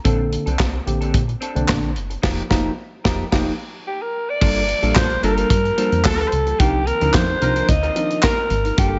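A straight 4/4 early-eighties boogie-funk groove at 110 BPM in G minor drives this funky, danceable cut from a longer piece, built on a punchy, up-front drum kit with handclaps and gated reverb, a plucky, dark analog bass, a worn, slightly out-of-tune electric piano with overdrive, and a lo-fi guitar riff bathed in lush chorus in the background. The band hits accents from 2.2 s and the electric piano adds a fill before a growling alto saxophone takes the breathy, raspy lead at 3.9 s. A very quiet vintage string machine then holds sustained chords, and a tight horn section plays a second line from 5.2 s, while the chords move from Bbmaj9 and F9sus4 to Gm9 and Cm11 under light studio reverb and a rolled-off top end.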